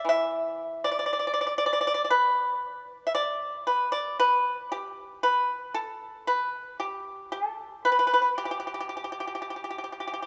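In a free rubato around 58 BPM in 4/4, this serene, elegant 10.3-second excerpt of Chinese traditional music features a solo pipa in the G gong mode, plucked with fingerpicks from E3 to E5 and sounding warm, dry, percussive and up front within a moderate concert hall reverb.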